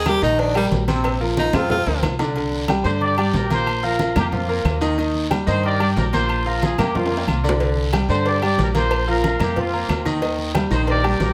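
Fiery and passionate, this salsa cut opens with an edgy, punchy tenor saxophone solo up front, its light vibrato bathed in plate reverb, leading the melody until 2.0 seconds over a woody, thumpy pizzicato upright bass and a brilliant grand piano with audible action noise and long sustain. From 2.8 seconds a vintage horn section with vibrato takes over the melody, touched by slapback echo and plate reverb, while compressed, saturated congas sit forward of raspy, distant guiro, ringing timbales and agogo bells, and band-limited claves in the background. Tight, high-tuned cowbell and bongos sit low in the mix at the start and return at 7.6 seconds, with brief drum fills along the way.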